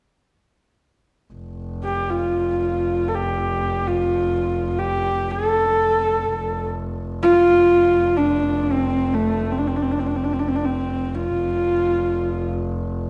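In free time, this short cut from a longer Mongolian folk piece in F gong mode feels vast and galloping. A bright, focused bowed double bass holds an F1 drone with vibrato from 1.3 s, and at 1.8 s a husky, earthy horsehead fiddle enters up front with the melody, its light vibrato and portamento touched by a slapback echo. A moderate scoring-stage reverb and a dark production surround the pair until 13.1 s.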